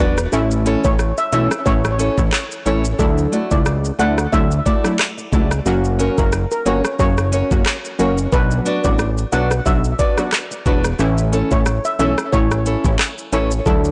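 Blown-out and overdriven with a dull top and light reverb, this sultry, bouncy dancehall excerpt at 90 BPM swings over A, Dadd9, F#, Bm and back to A, with an up-front island pop drum kit with a knocking kick, handclaps, shaker and a clipped snare, a fat, detuned analog bass, punchy chorused synth brass stabs, fingerpicked nylon-string guitar arpeggios through digital delay, very quiet high-tuned bongos, and a mellow, shimmering steel pan melody entering at 0.8 seconds.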